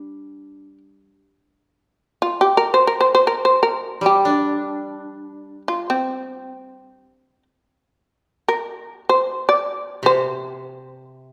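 Japanese traditional chamber music in free time, this austere, calm excerpt is drawn from a longer piece and moves in a C suspended pentatonic mode, tuned to A4 = 439 Hz. The plectrum-plucked, fretless shamisen carries the melody from C4 to D5, its mellow yet powerful tone marked by a percussive, buzzing edge and sitting up front as the louder of the two parts. Beneath it, the koto accompanies in a lower register from C3 to D4, played with fingerpicks for a bright, dry, woody sound that is also close and present though softer in level. Both instruments play throughout the 11.3 seconds, and the opening material returns at 7.8 s. A recital hall reverb with a 1.6-second decay surrounds the pair, giving the spare duo a spacious, resonant setting.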